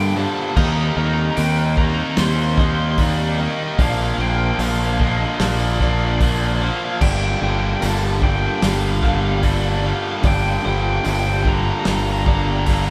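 A straight 4/4 pulse at 74 BPM settles in as a loose indie drum kit with a tight kick and medium-tuned snare enters at 0.6 s, joining a growling, overdriven fingered bass that sits up front beneath two bright, distorted guitars playing a riff. This brooding, cathartic post-rock excerpt in G minor moves through Gm7, Eb6 and Bbmaj7, while a dark, slightly broken-up lead guitar carries the melody between D5 and C6. Underneath, a very quiet twangy twelve-string electric guitar picks clean arpeggios and a shimmering, chorused pulse-width pad holds soft sustained chords, all heard as a band playing live in one stone room.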